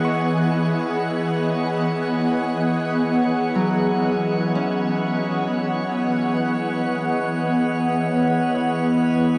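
In a straight 4/4 at 60 BPM, this serene ambient excerpt rests on a single Emaj9 chord in E major for its full 9.4 seconds, cut from a longer piece. Up front, a shimmering, ethereal pad holds sustained chords from E3 to F#5, its detuned, wave-folded sine tones carrying an octave-up shimmer, slow attack, long release and a granular, mellow glow through chorus and built-in reverb. Behind it, a Celtic harp plays bright, fingerpicked, ringing arpeggios between F#3 and C#6, sent through tape echo. A hand-pumped harmonium breathes a very quiet, reedy drone on E3. A drifting glass-harmonics texture adds glassy, calm overtones from C#5 to C#6, with its own chorus and built-in reverb. The dark production sits in a wet shimmer reverb with a 9.3-second tail.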